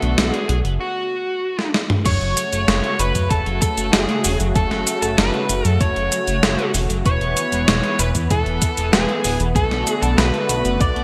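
Synthwave in F# minor at 96 BPM, moody and driving, where a dark, smooth overdriven lead guitar with delay carries the melody over a lush, detuned unison pad with sidechain pumping, a glossy, up-front chorused synth bass with tube saturation, a very quiet, crunchy double-tracked guitar riff, and a gated 80s digital drum machine whose gated-reverb snare and fill close a break from 0.8 to 2.1 seconds, when a thumpy electronic kick joins along with a dreamy, warbling FM electric piano with a soft pad layer in the background, all inside a bright 1980s-style digital production with light reverb.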